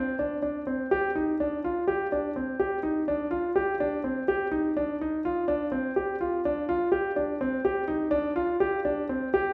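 The recording sits in a wet recital hall, where a 1.6-second reverb tail blooms around a concert grand piano placed up front. The instrument sounds natural and intimate, with deep bass, a warm body and audible action noise that brings the listener near the keys. This contemporary instrumental fragment, cut from a longer piece, moves in 7/8 at 249 BPM counted in eighths, with a straight feel that gives it an urgent yet hypnotic pull. The piano plays solo from 0.0 to 9.5 seconds, staying within the narrow span from C4 to G4. That confined register, set within the odd metre, lends the passage its restless intensity.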